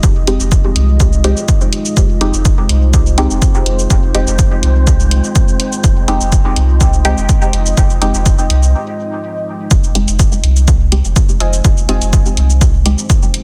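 Dub techno in a meditative, hazy mood, cut from a longer piece: a punchy, up-front kick and roomy electronic cabasa and hi-hat drive a straight 4/4 pulse over a clean sine sub bass, while a moody, detuned sawtooth pad holds a sustained Fm7 chord, pumping under sidechain with chorus and reverb. Muted, mellow chord stabs run through phaser and dub echo from 0.3 seconds, and a breathy, wind-like noise texture drifts in the background from 3.1 seconds before a brief break at 8.7 seconds. Near the end, at 11.4 seconds, a warbling, lo-fi, nasal pluck flickers through chorus and dub echo, all within a dense, heavily limited modern master.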